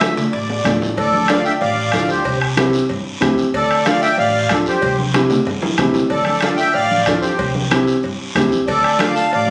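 A fiery, danceable cumbia in D minor opens with the full band together, the accordion out front carrying the melody with a reedy, sweet voice, its light tremolo tuning bathed in plate reverb. Beneath it, a dark upright piano supplies mellow, smooth accompaniment with a vintage character, while a woody, thumpy pizzicato upright bass on steel strings anchors the low end. The percussion is a bed of a soft-beater bombo, ringing low-tuned congas with a compressed, saturated edge, a raspy, band-limited guiro, and close, dry timbales and cowbell sitting in the background. At a brisk 187 BPM in straight 4/4, the harmony rocks between D minor and C, and drum fills at 0.5 and 5.3 seconds push the groove forward. The sound carries a moderate studio ambience with a phone-in-the-room quality, and the short passage is cut from a longer piece.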